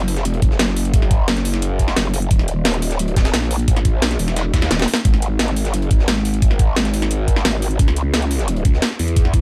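Tense and futuristic, this dark technical drum and bass excerpt runs at 175 BPM in straight 4/4, driven by an aggressive, wobbling growl bass that sits up front with chorus, overdrive and sidechain pumping from the start, joined at 0.1 seconds by a layered drum and bass kit with a cracking snare and metallic hats plus a gritty, high-tuned breakbeat sampler-style kit in the background, while a knocking electronic kick arrives at 0.4 seconds and a brief drum fill lands at 4.7 seconds in a dry mix.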